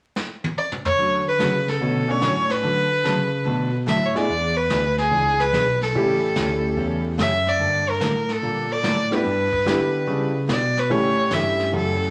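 A wet studio reverb and a soft bed of vinyl crackle give this cheerful, down-home western swing cut an old-record glow, moving at 145 BPM in 4/4 with a swung eighth-note feel in D major. A vintage brush drum kit opens with a fill at 0.2 seconds, its medium-tuned snare and punchy kick sounding natural and small-roomed with a rolled-off top. The fiddle enters at 0.6 seconds and sits up front as a single bowed voice, rich and nasal with light vibrato, smooth and even with a slightly boxy character. A jumbo steel-string acoustic guitar adds bright, full-bodied picked accompaniment, while a bell-like tine electric piano carries the bass line with a clean, direct tone. A detuned, jangly honky-tonk upright piano joins at 2.1 seconds, and the band rides a jazzy progression from Dmaj7 through Bm7, E7 and A7 to Gmadd9 and Em7/G before returning to A7.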